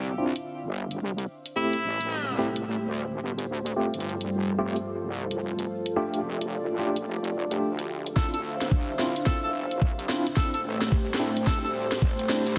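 A smooth, detuned sawtooth pad and a heavy, wobbling bass open this playful, gritty glitch hop excerpt at 109 BPM in A minor. The pad pumps against the sidechain, and chorus thickens both parts. A worn, slightly out-of-tune tine electric piano adds mellow stabs with tremolo and tape echo, and a filter sweep on it and on the pad runs through the whole build-up over chords moving through Dm9, Am7, G9sus4 and F69. A drum and bass kit sits up front with a cracking snare and hi-hat, swung at 63% on the sixteenths. A harmonica with vibrato and scooped notes appears briefly at 1.6 seconds, then returns at 8.2 seconds with vintage 12-bit sampler grit and tape echo, just as an overdriven, knocking electronic kick enters and a drum fill begins. The sound is heavily compressed with a radio-like tone and bathed in a lush hall reverb.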